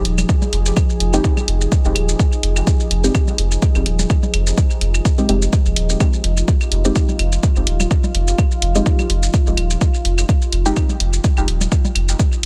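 An overdriven, layered electronic kick sits up front in this meditative, nocturnal dub techno excerpt at 126 BPM, with a gently swung 4/4 groove and an Fm7 chord: a round sine sub bass pumps beneath it, dry analog hi-hat and shaker tick above, tape-tinged congas and claves drift in the background through dub echo, and from 1.1 s a soft, nasal, detuned chord stab with chorus, phaser, echo and a filter sweep hovers amid a moody, slow-blooming sawtooth pad steeped in its own reverb, all in a fairly dry mix.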